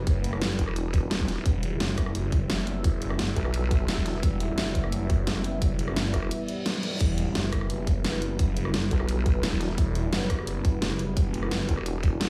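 Tense and mechanical, this dark technical drum and bass excerpt rides a single minor chord, with a deep, moody analog pad holding sustained chords and a swirling, thick detuned saw bass, phased and overdriven, both pumping under sidechain. A punchy electronic kick and a dubstep kit with a huge, up-front snare, hi-hat, rim click and crash drive the track in a small, lightly reverberant room, while a nasal, wobbling vowel-sweep bass with chorus plays from 0.6 to 6.3 seconds and returns at 8.9 seconds. A brief break brings a reverse cymbal from 6.4 to 7.0 seconds.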